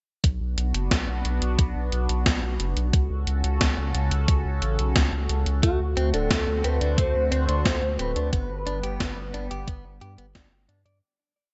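Synthwave at 89 BPM in B minor, cinematic and nocturnal, where a swirling, phased sawtooth pad, a round sequenced sixteenth-note bass with tube saturation, both pumping under sidechain, a thumpy electronic kick and an up-front gated 80s machine backbeat of closed hat and gated-reverb snare carry the chords Bm, F#m/C#, D7 and G, until at 5.6 seconds a smooth, vibrato-laden lead with ensemble chorus and delay, doubled in unison by a very quiet FM bell, sings a motif-based melody over a bright, clean, direct-recorded guitar arpeggio through digital delay, all in a dry, dark mix that fades out from 7.4 seconds to the close at 11.0.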